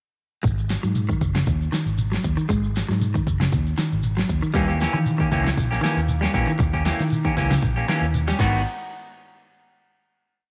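A funky, driving afrobeat groove opens at 0.4 s with a clean, scooped electric guitar picking an arpeggiated ostinato over a round, dark fingered bass riff, a punchy pop drum kit with fat snare and bright hats, and a grainy, close shekere, the harmony resting on G#5. At 4.5 s a twangy, slightly broken-up electric guitar joins up front with chorus-tinged stabs in upper chord shapes as the harmony shifts to D#7b9 and then settles on G#m7. A final hit rings out at 8.7 s in a moderate spring reverb.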